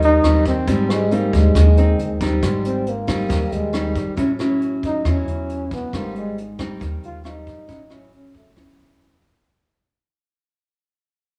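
A relaxed, romantic bossa nova at 137 BPM opens with a breathy, mellow trombone carrying the melody up front with vibrato and scooped notes, over fingerpicked nylon-string guitar, woody pizzicato upright bass and a vintage brush kit with a punchy kick, hi-hat and rim click, moving between Abmaj7 and A6 as the trombone takes a solo from 2.4 seconds while this excerpt from a longer piece fades out through moderate plate reverb and small room ambience, heard from further back in the room.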